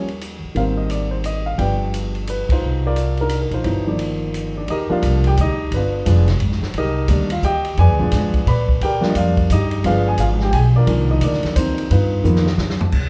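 A swinging waltz pulse drives this short jazz piano trio passage, cut from a longer piece, with a cool, late-night mood. The grand piano carries the melody up front with a warm tone over rich harmony full of altered dominant, major ninth and minor eleventh chords. The upright bass is played pizzicato on steel strings, woody and thumpy, and sits close in the mix alongside the piano. The vintage drum kit sits lower in the balance, with dark cymbals, a medium-tuned snare, a punchy kick and a rolled-off top across ride, hi-hat, crash and toms. A generous, reverberant studio room places the trio a little further back. The band hits an accent at 2.4 seconds, moves into a second section at 4.7 seconds, and closes on a drum fill from 12.3 seconds.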